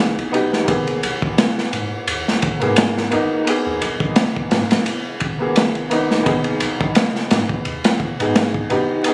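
Heard through a phone-recorded room with club reverb, vinyl crackle and compression, this brooding, cinematic trip hop excerpt moves at 86 BPM with a swung sixteenth feel in G# harmonic minor, as a brilliant, worn, slightly detuned upright piano with tremolo and tape echo circles G#mmaj7 and G#madd9 over a deep, round dub sub bass, while an up-front crunchy breakbeat kit carrying gritty 12-bit sampler saturation, a tight kick, a medium-tuned snare and dark ride cymbal comes in at 0.2 seconds.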